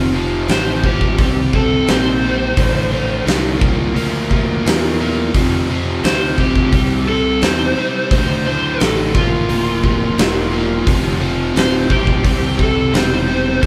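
Smoky and heavy, this 13.7-second excerpt of blues rock and southern rock rolls along at 87 BPM in a straight 4/4, with a biting, double-tracked overdriven guitar riff up front, a dark overdriven slide guitar carrying the melody, a growly fuzz bass, and a huge arena drum kit with a punchy kick that enters at 0.5 seconds, all captured as a band playing live in one room with moderate studio reverb over chords moving through F, C5, D5 and Bb.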